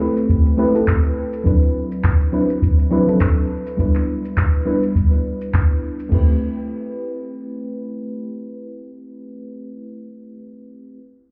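A mellow FM electric piano stands up front in this sunset chillout excerpt at 103 BPM in A dorian, its soft, round, dark tone coloured by chorus, digital delay and a filter sweep that runs until 6.1 seconds over Am9, D13 and Em7 chords. A deep, overdriven electronic kick sits equally forward beside a layered, tape-tinged deep house kit of crash cymbal, handclaps and shaker, and both drum parts stop at 6.2 seconds, leaving the piano alone to return to Am9. The whole recording sounds muffled, as if heard through a wall, with club reverb giving the gently swung sixteenths a smooth, hazy glow.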